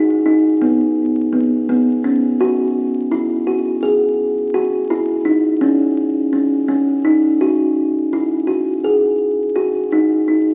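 Contemporary instrumental chamber music in an uneven 7/8 meter, this short passage cut from a longer piece moves at 168 BPM counted in eighths with a straight feel and a restless, urgent mood. A solo kalimba carries everything from 0.0 to 10.5 seconds, its plucked tines sitting between B3 and G#4. The instrument sounds woody and dark, with a solid-board body, smooth ringing tone and an up-front presence. A wet recital hall reverb with a 1.6-second decay surrounds it, and the sound carries the crackle and character of a very old 78 rpm record. The opening phrase runs to 7.4 seconds before it begins again through to the end.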